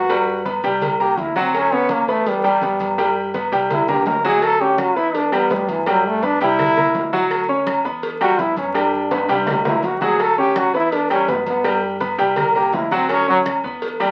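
A bright trombone takes an up-front solo with light vibrato in a sunny, danceable salsa excerpt at 166 BPM in D major, moving over chords such as Gmaj7, Dmaj7, Em and G. A clear, polished concert grand piano sits up front with deep bass and short sustain, while a woody, thumpy pizzicato upright bass, thick-skinned low-tuned congas, a tight high-tuned cowbell and vintage claves (entering at 4.4 s) stay in the background, and ringing agogo bells and timbales sound distant in a large room, with drum fills at 3.9 s and 9.1 s. The whole excerpt is steeped in wet studio ambience and the crackle of a very old 78 rpm record.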